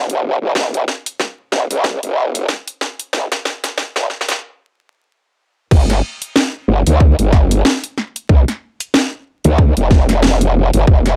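Glitch hop at 93 BPM with a swung 16th-note feel, playful and swaggering, this dry, gritty cut opens with a growling, wobbling bass and a drum fill over a filter sweep that builds through a stop at 4.4 seconds, then crashes into the drop at 5.7 seconds. The formant-filtered bass sits up front with tube-saturated chorus, joined by an overdriven drum kit of cracking snare, bright hats and crash cymbal, plus a tight, layered electronic kick that hits hardest in the mix. Vinyl crackle and small room ambience on the drums add grime.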